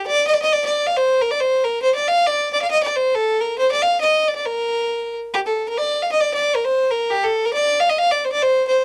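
A lone bowed fiddle, clear and earthy with light vibrato and sitting close and up front, carries this driving, dark yet lively Celtic folk fragment in B-flat major at 136 BPM in a swung 2/4, moving into a second section at 5.3 seconds, all captured in a moderate booth ambience on a home cassette recording with a faint mains hum beneath it, cut from a longer piece.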